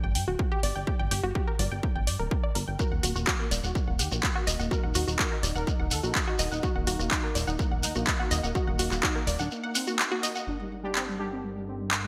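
Melodic techno with a dramatic, hypnotic pull, in which a detuned unison pluck arpeggio and a punchy, funky analog bass pump against a sidechain from the opening, joined by an overdriven, up-front kick drum, handclaps and sidechain-pumped hi-hat. A fat, dark analog synth brass melody and a grainy shekere join at 2.8 seconds, and a deep, very quiet ambient pad slips in beneath them at 3.6 seconds. A folded, bright brass stab arrives at 10.8 seconds and a warbling vintage drone at 11.1 seconds, all under a lush hall reverb and glossy 1980s-style digital sheen.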